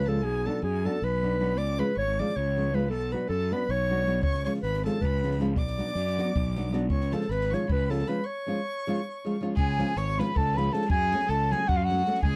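A dry, close 1970s-style studio sound frames this virtuosic, bittersweet Balkan wedding-band folk excerpt in 7/8, where a mellow, up-front clarinet carries the melody over a distant, vibrato-rich bowed violin second line, fingerpicked nylon-string guitar with audible finger squeak, and a bright, overdriven fuzz electric bass, while a compact cocktail drum kit with punchy kick and high-tuned snare joins at 4.2 seconds, ahead of a break at 8.2 seconds.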